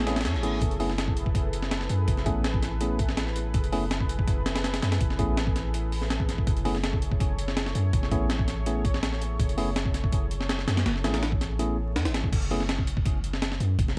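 Drum and bass with a jungle edge, dark and atmospheric, opens with a brief reverse cymbal in the background as gritty, compressed breakbeat drums with a thumpy kick and high-tuned snare drive up front beneath a deep, mellow 808-style sine bass with tube saturation, clean tine electric piano stabs through a combo amp trailing dub echo, and a lush, thick detuned sawtooth pad holding an F#m11 chord until the pad drops out at 12.3 seconds and the piano just after, leaving drums and bass under a haze of vinyl crackle in a dry room.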